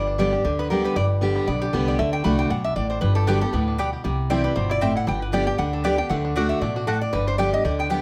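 Bluegrass in G major at a swung 233 BPM, virtuosic and rustic, with a metallic, nasal lap resonator guitar played with slide and fingerpicks sharing the melody up front with a twangy fingerpicked banjo, alongside a bright dreadnought acoustic guitar's picked accompaniment, a growly pizzicato upright bass, and a double-strung mandolin adding tape-echoed stabs from 3.3 seconds, all captured by close, detailed microphones in light reverb.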